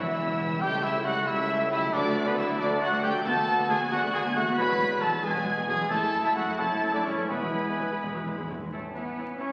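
A clear, up-front trumpet punctuates most of this spirited, lively classical passage with stabs in a rubato 6/8. Above a lush string body, the violins carry a smooth, vibrato-laden melody. A rich second violin section, a distant oboe, an airy flute group and a faint clarinet weave supporting lines, while intense violas and a mellow French horn section fill the middle and a concert harp adds quiet, ringing arpeggios. Cellos, double basses and a soft, distant tuba anchor the bass, round soft-malleted timpani sound briefly at 4.6 seconds and again from 7.3 seconds, and a bassoon enters only at 8.7 seconds, all set in wet scoring-stage reverb with the crackle of a very old 78 rpm record.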